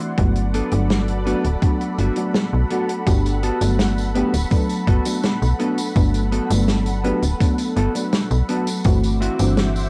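A mellow FM electric piano and a lush, detuned unison pad open together, the piano's soft, round tone washed in phaser, analog chorus and tape echo while the thick, sawtooth-edged pad sustains bright chords above it. This is a faded, dreamy vaporwave piece in G major at 83 BPM in a straight 4/4, cut from a longer whole and sitting on a Gmaj9 chord until it moves to D9 at 8.9 seconds. At 0.2 seconds a snappy, slap-like FM bass with a metallic attack arrives up front, joined by a thumpy, overdriven electronic kick drum and a natural country drum kit whose hi-hat, medium-tuned snare and tambourine sound like a small room. A clean, dark, fingered electric guitar enters at 0.5 seconds with a riff, coloured by subtle chorus and tape echo. The whole piece carries a home-recorded cassette character under light reverb, giving it a hazy, worn feel.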